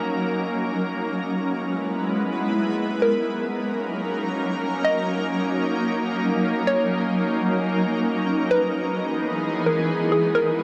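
A shimmering ambient pad stands up front from the first moment, its detuned, octave-up sustained chords glowing with a bright, ethereal sheen, slow attack and long release, thickened by chorus and its own reverb. This is a floating, blissful hip hop excerpt in free time, drifting between F#6 and Emaj7 chords. At 3.0 seconds a hollow square pluck enters with a bouncy, mellow melody, its fast attack and short decay colored by a noise layer, chorus and tape echo. The whole passage sits in a deep shimmer reverb with a long tail, giving the dark production a dreamy, suspended quality. It is cut from a longer piece, ending at 10.6 seconds with both parts still sounding.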